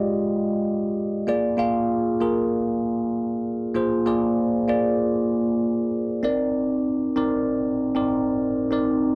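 Soul at 97 BPM in 4/4 with a light sixteenth-note swing, this short excerpt cut from a longer piece has a bittersweet, silky mood carried by a solo tine electric piano. The bell-like, bright tone sits clean and up front, colored by a phaser as it moves from Fm9 to Bb7, then shifts to Cm9 for a new section at 6.2 seconds. The sound is dry and close in the manner of a 1970s studio, with only a light touch of reverb.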